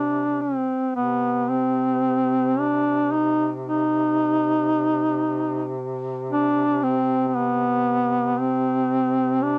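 The rhythm is free and rubato, drifting loosely around 52-58 BPM in 3/4 time, as befits this solemn, longing Caucasian folk lament in C harmonic minor, tuned slightly flat to A4 = 437 Hz. Two duduks play together from 0.0 to 9.6 seconds in this short fragment cut from a longer piece. The lead duduk sits up front with a warm, vibrato-laden tone, singing a narrow melody between B3 and Eb4 with scooped notes in a folk style. Beneath it, a second duduk holds a low drone on C3, quieter and more distant, with a roomy quality, its own vibrato and scooped notes. Light reverb and the grainy character of a home cassette recording give the whole piece an intimate, aged feel.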